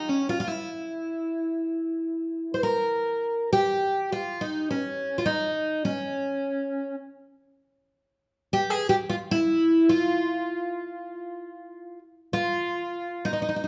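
A shimmering, octave-doubled twelve-string acoustic guitar, picked and sitting up front, carries this passionate, mournful fado excerpt alone in a rubato 4/4 that drifts between 93 and 105 BPM, ringing through the moderate reverb of a large studio room before a new section begins at 12.3 seconds.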